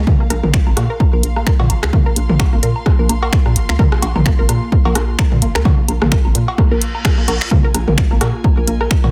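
Quirky and clinical, this minimal techno excerpt is built on a dry, punchy electronic kick up front, with an analog drum machine adding finger snaps and hi-hat and a layered techno drum kit of cowbell, rim click, toms and woodblock recorded in a large room. A hollow, bouncy FM bass and a squelchy, nasal blip pluck with chorus and digital delay both pump against the kick, while crisp wavetable chord stabs sit in the background with their own delay. A dark, intimate string section fades in underneath throughout, and a reverse cymbal sounds from 6.7 to 7.5 seconds.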